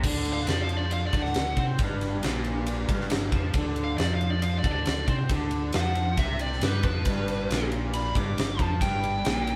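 This is a gritty, raunchy blues rock power trio number with a southern rock edge, driving along at 137 BPM in a straight 4/4, cut from a longer piece. A biting, bright lead guitar solo enters at 0.3 seconds and rides high over the band. Beneath it, a crunchy, double-tracked rhythm guitar picks out a riff in the low register. A dark, round, overdriven fingered bass anchors the bottom end. The huge arena drum kit sits up front with a punchy kick, fat snare, ride and crash cymbals, and a pumping room sound, while a very quiet tonewheel organ holds sustained chords with key click and a slow rotary speaker shimmer. The harmony moves between D7 and G7, and the moderate reverb gives the feel of a band playing live together in one room.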